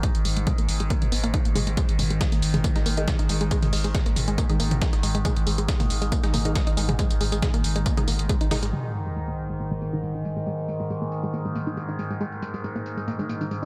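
A punchy electronic kick, a round sawtooth pluck riff with chorus and delay, a thick saturated sine sub bass and a resonant, overtone-sweeping drone open this intense, hypnotic 138 BPM peak-time techno excerpt over a G#5 chord, with sidechain pumping on the pluck, bass and drone and an analog drum machine playing filtered hi-hat, tambourine and toms; a gritty sampler-style soul kit of hi-hat, snare and tambourine joins in the background at 1.8 seconds, muted detuned dub chord stabs with phaser and digital delay arrive at 2.8 seconds, and at 8.7 seconds an electronic sub drop and impact mark the turn as a filter sweep moves across the drums, all set in a lush hall reverb with bright 1980s-style digital production.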